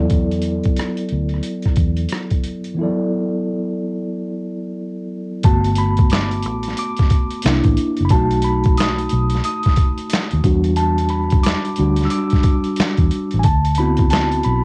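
A mellow tine electric piano and a dark, round, foam-muted fingered electric bass open this relaxed neo-soul R&B excerpt in G major, joined almost at once by a gritty, pitched-down boom bap drum kit sitting up front. At 90 BPM in 4/4 with a lazy swing on the sixteenths, the kit's thumpy kick, medium-tuned snare, rim click, hi-hat and handclaps have a compressed, sampler-style character with cassette tape grit and the feel of being re-recorded in a small room. The bass is amped and punchy with tube saturation, while the clean electric piano, heard through its built-in speakers and given a cassette tape colour, floats over chords moving from Esus2 to D69. A break arrives at 2.8 seconds, and from 5.4 seconds the electric piano takes a solo over lush changes through Gmaj9, C9, B7, Em9 and D13. Light reverb and the home cassette recording give the whole groove a soft, lo-fi intimacy.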